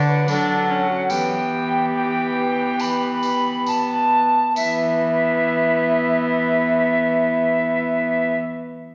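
Bathed in a wet recital-hall reverb, this excerpt from a longer renaissance-style consort dance in E minor moves at 66-75 BPM in straight 4/4 with a rustic, solemn air, slowing through its first 4.6 seconds as a dark cornet with vibrato carries the melody, an airy, wooden soprano recorder sits up front on the second line with soft attacks and rolled-off highs, a single gut-string viola bows a reedy, period-style accompaniment, a rich, close cello holds the bass, and a jingly, dry tambourine plays from 0.3 to 5.0 seconds over a move from D to E minor.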